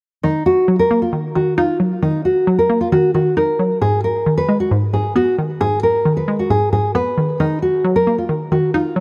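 A thumb-plucked nylon-string guitar carries the melody up front, its fresh strings, deep classical tone and audible finger squeak trailed by tape echo, in this eerie, hard-hitting half-time hip hop excerpt. Beneath it, a bouncy, detuned square-wave pluck with a fast attack, short decay and bright chorus shimmer plays the accompaniment from 0.2 s. The harmony moves from Ebm to Abm at 3.8 s and back to Ebm at 7.4 s, all set in light reverb and studio ambience.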